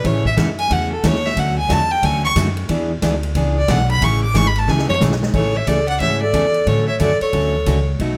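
Western swing country at 181 BPM in A major, cheerful and swinging, opens with a clear, up-front fiddle soloing over bright picked acoustic guitar, woody pizzicato upright bass and a big-room drum kit with a punchy kick, until a drum fill at 4.7 seconds leads into a new section where a breathy, intimate clarinet with scooped notes joins at 5.3 seconds, all under light reverb as the chords move through A6, Dmaj7, E7 and Amaj7 in this short cut from a longer piece.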